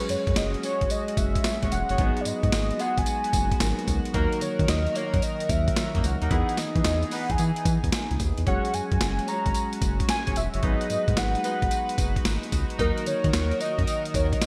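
Bouncy and slick, this new jack swing R&B excerpt in G# minor moves at 111 BPM with a swung sixteenth feel, built on a gritty, compressed, pitched-down sampler-style drum kit with a thumpy kick, high-tuned snare, hi-hat and tambourine bathed in gated reverb, alongside a round, deep analog bass. A velvety, detuned synth lead carries the melody with chorus and vibrato over a mellow tine electric piano, a shimmering chorused pulse-width pad holding sustained chords, and a jazz-style horn section adding smooth stabs in octave doubling until 13.8 seconds. The chords cycle through F#sus2, G#m7, D#m and Emaj7 in a bright 1980s-style digital production with a lush hall reverb.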